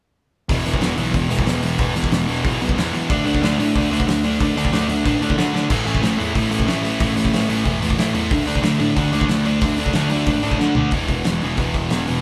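A live-in-one-room sound with moderate studio reverb frames this energetic, upbeat punk rock excerpt, where a sludgy, double-tracked overdriven guitar riff sits up front over a round, fuzz-laden picked electric bass and a loose indie drum kit with a fat snare, punchy kick and dark cymbals, its pumping room sound breaking into fills at 5.5 and 10.6 seconds before a brief closing section.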